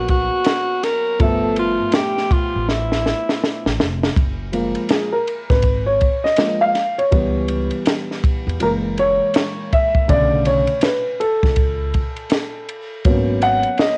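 A home cassette recording in a moderately reverberant room gives this relaxed, warm jazz-hop excerpt a hazy, vintage character. At 81 BPM in 4/4 with a loose sixteenth-note swing, a compact cocktail drum kit sits up front, dry and cassette-toned, with a punchy kick, high-tuned snare, hi-hat and dark ride cymbal. A pizzicato upright bass on steel strings adds a woody, thumpy low end, while a dark grand piano, mellow and intimate with audible action noise and plate reverb, carries the rootless G#m11 and G13 harmony. A breathy alto saxophone plays a subtoned jazz melody through cassette tape and tape echo, then falls away at 3.8 seconds, during a drum fill that runs from 2.7 to 4.2 seconds. From 4.2 seconds the smooth piano takes a solo over F#maj9, C#m7b5, F#7 and Bm7 before returning to G#m11.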